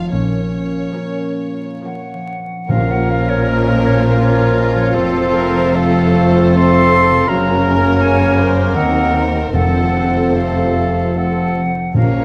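In a triple metre with a freely breathing rubato, this slow romantic orchestral movement unfolds with a yearning, melancholic air, cut from a longer piece. A background violin section carries the melody with soft, sul tasto bowing and light vibrato, while a second, very quiet violin section, a present clarinet and, from 1.8 seconds, a pure, distant silver flute weave second lines around it. An oboe adds its clear voice as another line. Beneath, rich double basses and expressive, distant cellos hold the bass, and a focused viola section and a bassoon supply accompaniment. Dark, roomy French horns and bright, vintage-toned trombones sustain very quiet chords, while a ringing, fingerpicked concert harp spills arpeggios across its range. Soft-mallet timpani with round calf heads enter at 2.7 seconds and return at 9.5 seconds, all set in a moderate scoring-stage reverb with a layer of vinyl crackle.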